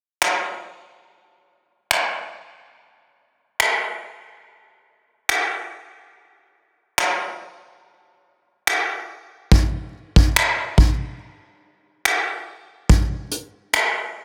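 Dry and densely limited, this short, moody R&B fragment with a lightly swung, longing feel is carried by an up-front soft brush drum kit recorded naturally in a small room, its finger snaps, hi-hat and punchy kick entering at 0.2 s, with a break at 11.2 s before the kit falls away at 13.9 s.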